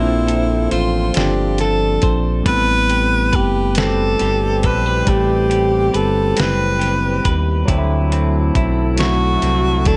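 An echo-heavy, softly reverberant mix with a dusky, rolled-off top end sets a late-night, yearning mood for this slow R&B passage in six-eight, cut from a longer piece. Up front, a breathy tenor saxophone carries the melody in a close-miked, whispered jazz voice with vibrato and a soft attack, its notes trailing tape echo. Alongside it, a clean, picked electric guitar plays a compressed second line, while an overdriven tine electric piano adds bright, barky accompaniment through a combo amp, colored by phaser and echo. A smooth gliding synth bass, mellow and sustained with portamento and vibrato, sits prominently in the low end, and a dark horn section punctuates from a distant, roomy background with punchy stabs doubled in octaves. A dusty, sampler-style drum kit with a thumpy kick, fat snare and hi-hat enters at 0.3 s, gritty and compressed, as the harmony moves from Bbmaj9 to Am9 and then D9.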